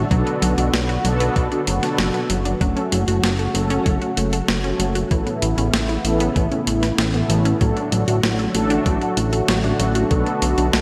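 A fat, thick analog bass sits up front in this moody, driving synthwave excerpt at 96 BPM, with a thumpy, tape-tinged electronic kick and a clean 12-bit drum machine supplying hi-hat and a medium-tuned snare. A smooth, detuned analog pad holds sustained chords with chorus and sidechain pumping, while round, mellow synth brass stabs carry tape echo, slapback and vibrato, and a lush, punchy unison pluck plays arpeggios in the background through the same echoes. The chords move through Bm7, F#m, Aadd9 and D/A, all set in a lush digital hall reverb that gives a big arena sound.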